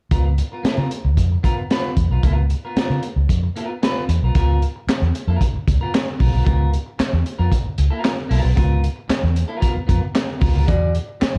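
A gritty, playful funk excerpt at 114 BPM in Db mixolydian, tuned slightly sharp to A4 = 444 Hz, opens at 0.1 s on a Db6 chord, with a crunchy, saturated breakbeat kit (punchy kick, high-tuned snare, hi-hat and handclaps, its top rolled off) and a round, foam-muted fingered bass, both sitting up front. A bright, twangy, picked clean electric guitar plays accompaniment further back in the mix, and the harmony moves to E9 at 10.7 s. The production is dark and dry, with little reverb, and the kit carries a studio-room sound.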